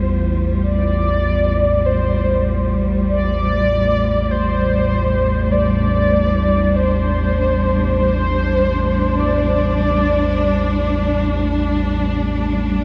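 Desolate and unsettling, this dark ambient drone drifts in free time, cut from a longer piece and tuned to A4 = 439 Hz. A deep, ominous drone rumbles beneath everything from the first second, its slow attack and long release blurred by built-in reverb and a subtle chorus. Above it, a lush symphonic cello section holds sustained bowed chords with expressive vibrato, moving from Fadd9 to Dsus4 at 3.1 seconds. At 0.6 seconds a mellow, horn-like synth lead enters with a round, warbling vintage tone, carrying a narrow melody between C5 and D5 through analog chorus and a diffuse ambient delay until 11.6 seconds. A huge, wet reverb with a 7.8-second decay envelops the dark production, leaving the layered parts hanging in a cavernous, shadowy space.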